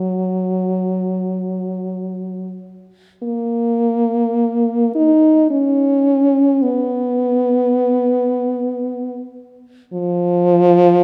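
Classical and freely expressive, this brief excerpt features an unaccompanied French horn in a lyrical, nostalgic mood. The tempo is slow and elastic, moving between 39 and 57 BPM in 3/4 with a rubato feel, and the instrument is tuned to A4 = 441 Hz. Close-miked and placed up front, the horn has a mellow tone with vibrato, staying in a middle register from F3 to Eb4 across the full 11 seconds. An opening phrase gives way to a new section at 3.2 seconds, which carries the line to the end of the cut. A wet recital hall reverb with a 1.8-second decay surrounds the solo with a lingering, spacious glow.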